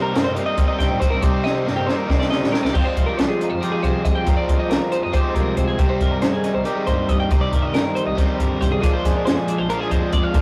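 Intricate and restless, this math rock and midwest emo fragment in 7/8 puts a bright, overdriven, double-tracked semi-hollow guitar riff up front over two clean, compressed twelve-string electric guitars, one giving low accompaniment and one picking high arpeggios, with a nasal bowed double bass sitting very quiet beneath and a dark, punchy compact cocktail kit with a high-tuned snare whose fill from 1.4 to 2.7 seconds leads into a longer passage, heard as a rough rehearsal-room recording with small-room reverb and saturation.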